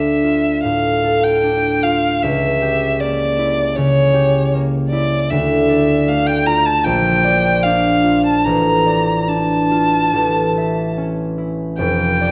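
Set in a recital hall with a long, wet reverb and a dark, warm production, this short romantic classical passage, cut from a longer piece, pairs a solo violin and a concert harp, both up front and playing throughout. The single bowed violin carries a yearning, elegiac melody in a rich, focused tone with vibrato. The fingerpicked harp ringing beneath it supplies a broad accompaniment as the rubato phrasing moves through minor chords, a diminished colour and a dominant before settling back on the tonic.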